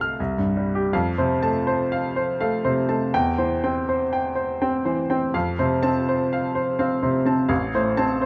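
In a flexible, rubato three-beat lilt, this lyrical, warm romantic character piece for solo piano, cut from a longer work, features a clear, natural baby grand with short sustain placed up front, its detailed close sound ringing into a moderate recital-hall reverb.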